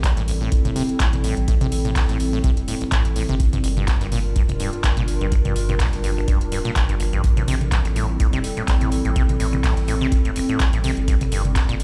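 Acid house with a trippy, driving feel, cut from a longer piece, where a deep, tape-warm electronic kick leads a booming analog drum machine of handclaps, metallic hats and toms, with a very quiet brushed jazz kit of hi-hat and high-tuned snare far beneath. A round, dark analog bass and a warbling, nostalgic lo-fi pad holding sustained Am7 and Gm7 chords both pump against the kick, the pad softened by chorus and its own reverb. From 0.2 seconds a squelchy, resonant sawtooth acid riff joins with cassette grit and tape echo, all of it heard as if through a big sound system in a bare room.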